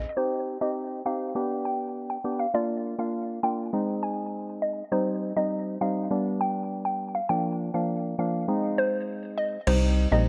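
Dancehall in C minor at 101 BPM in a straight 4/4, this short excerpt is cut from a longer piece and carries a tough, bouncy mood. A dark, percussive organ stab with chorus holds the accompaniment from the start, while a hollow square-wave pluck, detuned and treated with chorus and tape echo, carries the melody from 0.2 seconds through a cycling Cm, G, Bb and Ab progression. A filter sweep runs under this opening stretch until 9.7 seconds, where the harmony returns to Cm and a punchy, funky analog bass arrives up front with ring-modulated, sawtooth bite. At that same moment a gritty, compressed crash cymbal sounds briefly with tape echo, while the kick is muted for the final instant. The mix is echo-heavy and low-pass filtered, set in light reverb and digital ambience.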